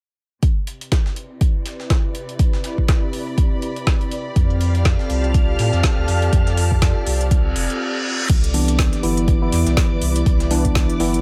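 Digital ambience surrounds this soulful deep house excerpt at 122 BPM in C major, with a swung 16th-note feel and harmony moving from Cmaj9 to F69 and back. From the start, a warbling, nostalgic lo-fi pad holds detuned, mellow chords through chorus and its own reverb, breathing with sidechain pumping, while a distant, lush bowed string section with vibrato fades in beneath it. An up-front, deep electronic kick anchors two layered drum kits: a deep house kit with a woody snare, smooth low-passed hats and a crash cymbal, and a gritty, pitched-up sampler-style breakbeat kit with a medium-tuned snare and high-passed hats, as a filter sweep plays over the drums. At 4.4 seconds a round sine sub bass arrives alongside shimmering vintage string-machine violins set in the background. A reverse cymbal sounds at 7.5 seconds, leading into a brief break, and from 8.5 seconds a clean tine electric piano plays stabs through a combo amp, trailed by dub echo.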